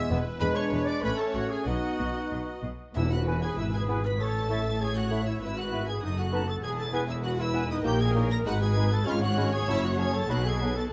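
Lively and graceful, this quick classical-period symphony movement in E major at 98 BPM in 2/4 sets a rich, focused violin melody over background lines from a second violin section, clear clarinet, mellow oboe, pure silver flute and bassoon, with distant trumpet stabs, sustained horn chords, lush violas, cellos and an up-front double bass section, while hard-mallet timpani strike only at 0.0 and 3.0 seconds as the music moves into a new section, all bathed in a moderate scoring-stage reverb.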